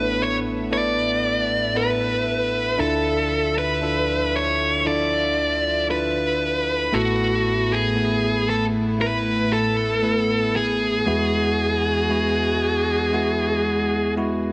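This tender, emotional pop ballad fragment opens at once on a high-gain lead guitar carrying the melody, a bell-like tine electric piano and a chamber string section, moving slowly at 58 BPM in a straight 4/4. The guitar sits up front with a dark, distorted, picked tone, singing its line between F#4 and D5. Close beside it, the electric piano supplies bright, clean accompaniment with a subtle chorus, spanning a broad range from its low bass notes up into the treble. Further back, the bowed strings hold sustained chords with light vibrato and a reedy, gut-string, period-style character. The harmony drifts from Asus2 to Dmadd9, back to Asus2, and settles on Eadd9 at 11.1 seconds, all bathed in a lush hall reverb. The guitar drops out at 14.1 seconds, leaving piano and strings to ring on until the cut at 14.5 seconds.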